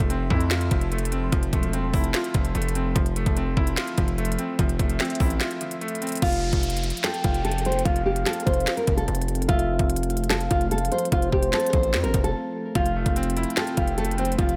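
Trap hip hop at 147 BPM in a half-time feel in F major, triumphant yet wistful, this excerpt sets a brilliant, worn baby grand piano playing filtered accompaniment against a glassy, ethereal FM pad with phaser and chorus in the background, a heavily saturated, aggressive 808-style bass, and a crisp, up-front trap kit with knocking kick, sharp snare, hats, snaps and crash, before a dark, woody nylon-string guitar melody with delay and a round, octave-layered synth lead with vibrato enter at 6.2 seconds over an electronic downlifter, with the piano returning at 12.8 seconds.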